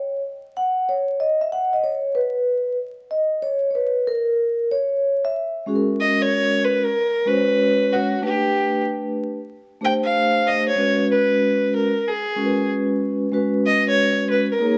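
A dark, woody fiddle, bowed by a single player with light vibrato, carries the melody up front from 6.0 seconds. Before that, a mellow, airy vibraphone played with soft mallets and a medium motor vibrato rings alone, then stays underneath as accompaniment. This relaxed hip hop cut swings its 16ths at 94 BPM over chords moving from B5 through Am11 and G#m11 to C#5, and the production is dusky and warm, with vinyl crackle and a moderate echo chamber reverb.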